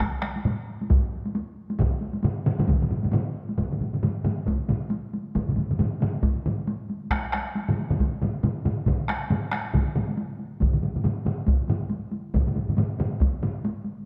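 A swung sixteenth-note pulse in 4/4 at 136 BPM drives this ceremonial, driving taiko piece in the Japanese traditional style, and the tempo keeps speeding up throughout the excerpt. Two taiko ensembles struck with heavy sticks sit up front from the start: one has a small-room closeness, the other the ring of a live room. Alongside them, a solo taiko drum played with hard sticks opens in a small room. A second hard-stick solo drum enters at 1.8 s, set up front yet distant and carried in a large room. The music shifts into a new section at 3.6 s, and the dark production places the whole group in a moderate scoring-stage reverb of 1.9 s; the excerpt is cut from a longer piece.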